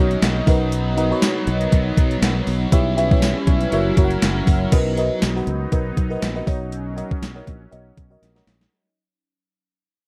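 Nostalgic and glossy, this 1980s-style pop fragment moves at 120 BPM in B major with a light sixteenth-note swing, driven by an up-front, overdriven gated 80s digital drum machine with a thumpy kick and a gated-reverb snare, a growly, round fretless electric bass, a dreamy FM electric piano with a soft pad layer under chorus and phaser, a sweeping resonant sawtooth pad with chorus, and a bright, tight distorted guitar that drops out at 5.2 seconds, set in a dry, close studio sound that fades out from 4.7 seconds toward a drum fill at 8.2 seconds.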